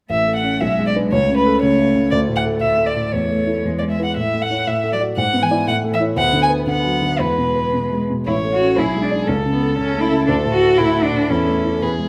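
Cheerful and lively, this quick classical-period excerpt for piano quartet moves with a rubato feel as a dark, woody violin with vibrato carries the melody up front, a rich, focused cello sings a second line, a warm baby grand piano accompanies, and a second, smooth and even violin joins at 8.3 seconds, all set in a moderate recital hall with close, detailed sound.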